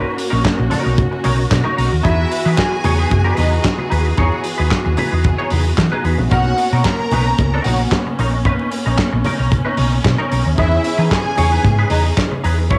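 This home cassette recording has a small-room feel with light reverb, and the drums, guitar and both string parts carry a cassette-tape color. It is a joyful, danceable disco cut at 112 BPM in straight 4/4, taken from a longer piece and moving between Bmaj9 and Emaj7. A clean, bright semi-hollow electric guitar plays picked, compressed accompaniment with an ensemble chorus, while a lush, bowed string section holds sustained chords from the start. A soul drum kit with a tight kick, medium-tuned snare, hi-hat and handclaps sits up front with a rolled-off top, joined almost at once by a dark, round, fingered short-scale hollow-body bass that is the loudest part. Very quiet, low-tuned congas with a thick-skinned, vintage tone add hard-handed percussion underneath. At 2.0 seconds a second string line enters above the chords with vibrato and a smooth top, spanning D#4 to A#5 before dropping out at 12.1 seconds.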